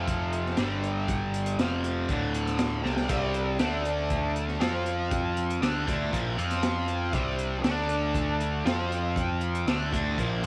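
Psychedelic rock at 119 BPM in a straight 4/4, this short cut from a longer piece feels mysterious and trippy. A cranked stack guitar carries the riff up front, its bright, double-tracked, picked tone overdriven and treated with flanger, moving through chords such as F5, G5, Dm, Cadd9 and D5. Beneath it, a picked electric bass adds an amped, growly low end, while a vintage combo organ holds buzzy, overdriven chords in the background. The drum kit enters at 0.1 seconds with a dark, saturated breakbeat sound: gritty and smooth at once, with a punchy kick, medium-tuned snare, dark cymbals and a rolled-off top, plus a drum fill at 2.8 seconds. The studio ambience carries a moderate spring reverb that gives the whole cut its sense of space.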